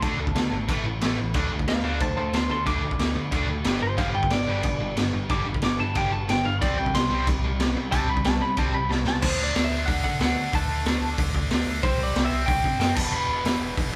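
A rowdy, upbeat punk rock passage at 183 BPM opens with a dark, slightly broken-up lead guitar soloing over two bright, distorted rhythm guitars set in the background, an overdriven bass with a round, punchy tone, and an up-front garage drum kit with a gritty, saturated sound, a boomy kick and a high-tuned snare. After a drum fill at 8.9 seconds, one of the rhythm guitars drops out at 9.2 seconds as the band moves into a new section. The lead guitar keeps its compressed tone throughout, and the whole band sounds like it is playing live together in one large studio room.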